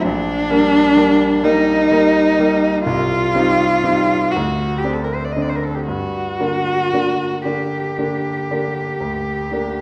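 The recording has a wet recital-hall reverb, heard from further back in the room, with a faint mains hum beneath the music. It is a short romantic classical duo for cello and grand piano, cut from a longer piece and lasting 9.8 seconds. The mood is yearning and melancholic, and the 12/8 metre is shaped with free rubato. Up front, a single bowed cello carries the melody in a rich, expressive voice, colored by vibrato and sliding portamento. The concert grand piano accompanies with a bright, brilliant tone and a deep bass, and sits a little below the cello.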